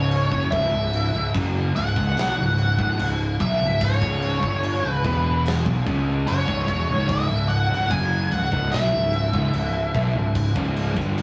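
Stoner and doom metal at a slow 73 BPM in C# minor, this hypnotic, heavy fragment from a longer piece sits on a single C#m chord for its full 11.2 seconds. An up-front octave-fuzz lead guitar with wah and distortion carries the melody over a dark, double-tracked thick fuzz guitar riff, while a growly, overdriven fingered bass anchors the low end. A big acoustic rock drum kit with a tight kick, medium-tuned snare, crash cymbal and rolled-off top enters at 0.1 seconds, all captured in a rough rehearsal-room recording with light small-room reverb.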